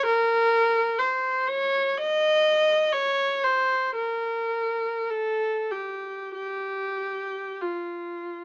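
Heard through light reverb with a small-speaker quality, this brief fragment of a longer classical piece places a single viola up front. The mood is yearning and lonely, and the free, expressive 3/4 pulse stretches and gives under a rubato feel. The bowed viola plays alone for the full 8.4 seconds, moving between F4 and Eb5 in a rich, even tone with a smooth top. Vibrato colours each held note, and the line flows in a seamless, unbroken way. Tuned slightly low to A4 = 438 Hz, the solo voice carries an intimate, searching character.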